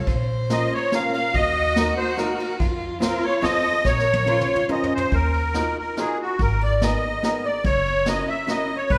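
Musette waltz in Bb harmonic minor at 143 BPM in 3/4, bittersweet and nostalgic, with a reedy, shimmering musette accordion carrying the melody up front from 0.5 seconds, while a bowed violin with vibrato and portamento sings an expressive second line until 5.1 seconds. Beneath them, a woody pizzicato upright bass and a dark, clean, picked hollow-body archtop guitar outline chords moving from Bbm through Ebm and F toward Gb7. A vintage kit played with brushes, with dark cymbals and a punchy kick, keeps the lilt and adds a drum fill at 3.9 seconds, all set in the wet reverb of a recital hall.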